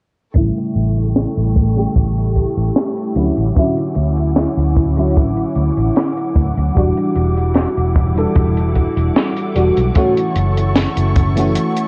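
Vaporwave at a slow 75 BPM in 4/4 with a slight swing on the sixteenths, this short cut from a longer piece feels melancholic and woozy, steeped in worn, warbling cassette tape with pitch drift, a low-pass filter, light reverb and small-room ambience. An FM electric piano with a soft pad layer carries the accompaniment from 0.3 seconds, its dreamy, detuned tone with a faint noise layer treated with phaser, lush chorus and tape echo. A studio string section enters at 0.4 seconds with intimate, bowed sustained chords played sul tasto with vibrato, mixed quietly behind the other parts. Up front, a vintage muted fingered electric bass gives a round, foam-muted, amped low end, while a compact cocktail kit adds hi-hat and a high-tuned snare alongside a punchy kick, the drums dark and warm with a rolled-off top. The harmony moves from A7 to Dmaj9, Em9 and F#m7 under a filter sweep, and a brief break arrives at 11.6 seconds.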